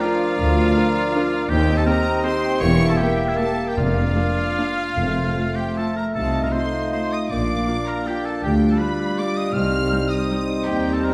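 Sweeping and elegant, this classical orchestral ballroom waltz moves in 3/4 at 145-175 BPM with a rubato feel in Bb major. It is cut from a longer piece. A lush, focused violin section carries the melody from a distance, while a second, more expressive violin section sits in the background with a clear solo oboe, an airy, hollow small flute group and a solo clarinet weaving supporting lines. Beneath them a very quiet, smooth viola section and a solo bassoon fill out the accompaniment, a mellow, roomy French horn section holds sustained chords, and a trumpet section adds stabs with a smooth top. Cello and double bass sections join at 0.4 seconds to anchor the bass with even, bowed tone, and a very quiet timpani with soft mallets sounds a round F2 between 3.8 and 5.5 seconds. The harmony passes from Bb/D through Cm/Eb and Edim to F7/C, then Bb, G7/D and Cm, all bathed in a wet scoring-stage reverb.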